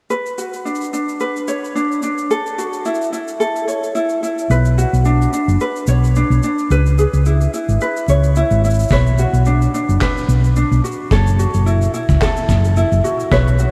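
A swung sixteenth-note groove at 109 BPM in 4/4 sets an unhurried, wistful pace for this autumnal folktronica excerpt in B dorian. A bright, fingerpicked ukulele sits up front from the start, spinning light arpeggios through a low-pass filter and a diffuse ambient delay, while a distant, roomy shaker and handclaps with a rolled-off top keep time softly behind it. At 4.5 seconds a dark, round hollow-body short-scale electric bass enters, fingered and amped, sitting prominently in the mix. From 8.9 seconds a punchy acoustic kick drum joins for the closing section, its pumping stone-room sound adding weight beneath the ukulele. The chords cycle through Bmadd9, F#m7 and C#m7, and the whole piece is soaked in a huge, dreamy reverb with a layer of vinyl crackle.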